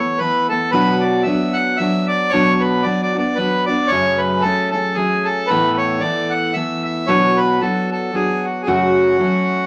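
Rollicking and bright, this short cut from a longer Celtic folk piece swings lightly in 3/4 at 113 BPM as a reedy, close-miked accordion carries the melody up front over a full-bodied jumbo steel-string guitar fingerpicking fresh-sounding accompaniment through Asus2, Bm and F#m harmonies, all set in a short studio reverb with a layer of vinyl crackle.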